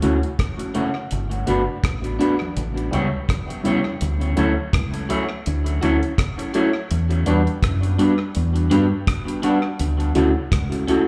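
An 83 BPM lovers rock groove in 4/4 with a gentle 16th-note swing sits in D major, cut from a longer piece and moving from Dmaj7 through Gmaj7, A7 and Em7 with a romantic, sweet mood. A dry, tight-kicked reggae kit with hi-hat and rim click, carrying tape echo, sits up front beside a round, punchy dub bass, while a twangy, slightly broken-up guitar through a small old amp adds picked stabs with spring reverb, tape echo and slapback. A mellow tine electric piano with phaser and echoes fills the accompaniment, and very quiet, distant congas with soft hands play until 4.0 s and return at 9.8 s, all heard as a live gig through the venue's PA with club reverb.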